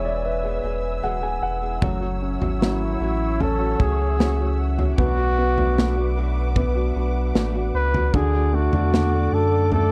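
This tender, heartfelt pop ballad moves at 76 BPM in a straight 4/4 and is cut from a longer piece. Over the first 1.8 seconds a concert grand piano plays a fill, intimate and polished, with audible action noise and long sustain. At 1.8 seconds a modern studio drum kit enters with a punchy kick, a medium-tuned snare and toms in a pumping room sound. Up front, a flugelhorn carries the solo melody with light vibrato and a smooth top, while a round, deep sine sub bass sits close beside it. Further back, a fingerpicked flamenco guitar plays arpeggios with finger squeak, and a muted string section holds dark, veiled con sordino chords from a distance. The harmony moves from E through F#m7 and Bm7 to D, and the dry mix keeps the whole ballad close and warm.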